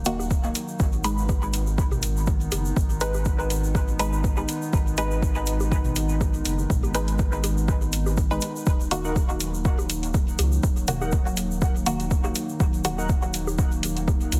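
A warbly, tape-like pad and a round analog bass open this hypnotic, hazy dub techno excerpt at 0.0 seconds, the pad holding mellow, detuned chords with chorus and built-in reverb while the dark, nasal bass sits deep underneath, both pumping from sidechain compression. Almost at once the groove fills in at 122 BPM in 4/4 with a 55% swing on the 16ths: an overdriven, layered kick sits up front, metallic analog hi-hats ride above it, a grainy, bright egg shaker adds live-room texture, and dry electronic bongos and toms tick along in the background with dub echo. A muted, sawtooth dub chord stab with a filter pluck runs through the piece, colored by chorus, phaser and dub echo. The harmony moves from Eb minor to Ab minor and returns to Eb minor. At 9.0 seconds a nostalgic, lo-fi synth keys riff with ring modulation and a filter sweep enters far back in the mix, ending with the stab at 13.1 seconds. 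The whole track carries a heavily compressed, radio-like sound with light reverb.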